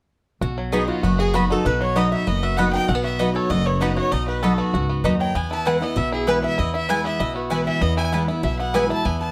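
A rustic, joyful bluegrass snippet at 195 BPM opens at 0.4 s with a twangy fingerpicked banjo melody over a full-bodied dreadnought guitar and a thumpy, woody upright bass up front, joined at 0.7 s by a clear bowed fiddle with light vibrato, a metallic, nasal slide resonator guitar in the background and bright double-strung mandolin stabs, all in light reverb as the harmony moves from B to E at 5.4 s.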